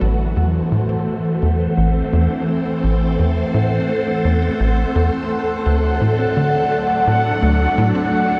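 From the opening moment, a swirling, phased string machine holds sustained chords over a punchy sawtooth sequencer bass riff, while a very quiet detuned unison pluck traces arpeggios and a resonant, bubbling stepped-filter texture hovers high above, all at a steady 85 BPM in this mysterious, cosmic fragment of ambient space music that moves from Am to D at 5.7 seconds inside a huge, dark reverb.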